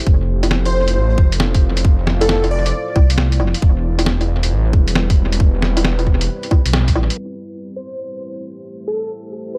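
A tight, up-front electronic kick drives this rainy, wistful future garage excerpt with a swung feel, joined by a muffled, pitched-down lo-fi sampler kit of hi-hat, snare and woodblock through analog delay, a menacing, saturated detuned saw bass pumping under the sidechain, and a deep ambient pad with chorus and its own reverb sitting in the background over Fmaj7, Cmaj7/E and Am7, while a catchy, full-bodied plucky unison lead with tape echo and vibrato returns at 7.8 s as a filter sweep carries the echo-heavy, low-passed mix through its final seconds.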